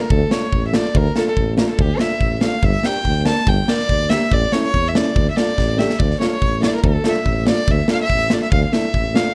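Klezmer in 2/4 at 142 BPM, this short, soulful and festive passage sits in D harmonic minor with a straight feel and is cut from a longer piece. A single rich violin carries the melody from G4 to A5, played up front and intimate with light vibrato, a soft attack and an airy sul tasto bow. Beneath it, a mellow tuba holds the bass between G1 and E2 in a classical style, while a dark, woody upright piano with short sustain fills in the accompaniment from 0.3 seconds. A big rock drum kit, acoustic and up front with a punchy kick and medium-tuned snare in a big room, drives the dance and plays a fill from 5.6 to 6.0 seconds just before the opening theme returns at 6.0 seconds. The harmony moves from Dm through Gm and A to a bare D5 before settling back on Dm, all set in light reverb.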